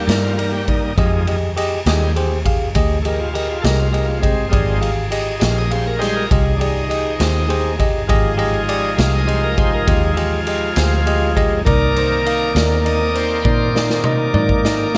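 A mournful, soulful slow blues in a straight 12/8 at 67 BPM, this excerpt is led by a shouting, lightly overdriven tonewheel organ soloing through a slow rotary speaker over Cm7 and Fm7 chords, with a barky, bell-like tine electric piano comping, a round, foam-muted electric bass, a gritty, boomy garage drum kit in a pumping stone room that closes on a fill at 13.4 seconds, and a very quiet jazz horn section holding chords from 1.0 seconds, all in light reverb.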